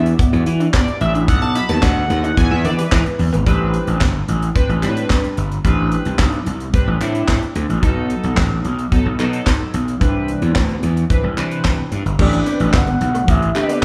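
Heard as a live gig through the venue's PA with club reverb, this late-night, danceable early-eighties boogie funk excerpt opens on an analog polysynth solo, the glossy, full-bodied chorused polysynth carrying on with slapback echo over a very quiet, shimmering pulse-width pad. Up front, a growly, overdriven slap bass and a dry, tight funk drum kit with a high-tuned snare, crash, hi-hat and handclaps drive the groove, while a crisp, vintage group handclap and a slightly broken-up, lo-fi electric guitar riff through a small old amp sit in the background. At 12.2 seconds the guitar returns and a smooth, dark synth lead with vibrato, chorus and tape echo takes up the melody, and the pad comes back at 12.6 seconds.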